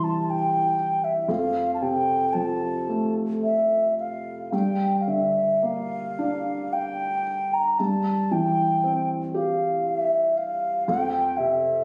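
Haunting and mournful, this Celtic folk excerpt drifts in a rubato 3/4 at 56 BPM, with a pure, woody baroque flute singing an up-front, vibrato-touched, tongued melody over a soft, boxy felt-muted upright piano whose audible action noise and intimate tone sit close beneath it, all bathed in a moderate recital-hall reverb as the harmony moves from C through F, Gm7 and C/G to settle on F5 at 10.9 seconds.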